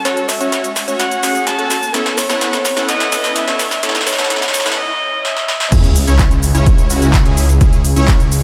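A distant, roomy alto saxophone with jazz-style vibrato carries the melody through the build-up of this euphoric, anthemic festival progressive house excerpt, its clear tone roughened by vintage 12-bit sampler grit and trailed by digital delay, over huge, bright supersaw chords that pump against the sidechain under a filter sweep. Layered big-room drums with a punchy snare, crisp hats, handclaps, shaker and crash play fills while a background riser climbs toward a break at 4.8 seconds, where a swell takes over. At the drop at 5.7 seconds the sax stops, and a punchy electronic kick and a thick, menacing detuned saw bass arrive up front, all set in a lush hall reverb.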